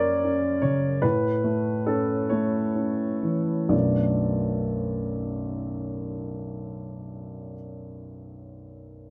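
The recording is dry and closely miked, catching fine detail from a single upright piano placed up front. This short fragment of a longer neoclassical minimalist piece has an intimate, reflective mood, set in B minor and 6/8 at a slow 40-53 BPM counted in dotted quarters. The piano plays alone throughout, its woody, open tone and long sustain reaching from B1 up to D5. The playing is rubato, easing and slowing through the first 3.7 seconds as the harmony moves from F# to A. At 3.7 seconds a second section begins on a Bm7 chord, which carries the warm instrument to the end at 9.1 seconds.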